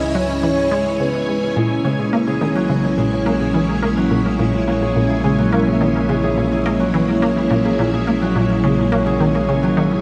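A dark, round synth lead with vibrato opens this fragment of a longer piece, sounding its brief octave-layered melody through chorus and tape echo until 1.6 seconds. Beneath it, a lush, vintage string machine holds mellow, full-bodied chords with ensemble chorus, sitting up front in the mix, while a juicy, squelchy blip pluck repeats a resonant riff through lush chorus and tape echo. A low analog drone warbles and evolves underneath as the bass, its pulse-width-modulated tone softened by chorus. At 1.6 seconds, as the harmony moves from C#m to A#dim, a fingerpicked acoustic Celtic harp enters with ringing arpeggios carried on tape echo. The whole is bathed in a huge, wet reverb that places this straight, sequencer-driven space music in a vast, echoing space, giving it an expansive, cosmic mood.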